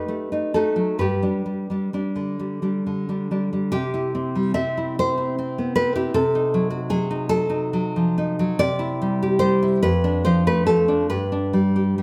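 A full-bodied, fingerpicked nylon-string guitar plays alone and up front in this tender, warm excerpt of a romantic classical guitar piece in C major, tuned to A4 = 435 Hz, unfolding in a rubato 6/8 at 43-52 BPM in dotted quarters, opening on a B7b13 that settles onto G before a second section begins at 3.7 s and moves through C, Cdim7 and Dm/F back toward G, all within a moderate recital-hall reverb.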